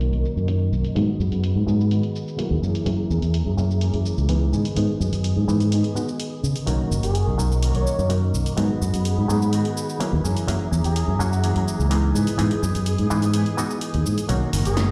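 A filtered disco house groove opens with everything but the horns arriving together under a filter sweep that runs until 14.3 seconds, setting a feel-good, joyful mood in straight 4/4. Out front, a fingered electric bass with tube saturation sits warm and direct, while a dry analog drum machine drives hi-hat, shaker and an overdriven, punchy snare. A muted clav adds hollow, nasal accompaniment through a phaser from the background, and an envelope-filtered electric guitar picks a dark, clean riff coated in lush chorus. Above them, a rich studio string section holds smooth, bowed chords with vibrato over a looping progression of Bmaj9, G#m7, F#9 and Emaj7. At 7.0 seconds a bright horn section enters with a jazz-style melody roughened by vintage 12-bit sampler grit, dropping out at 11.7 seconds before returning briefly just as this excerpt, cut from a longer piece, ends in a stone room reverb that sounds played on a big sound system.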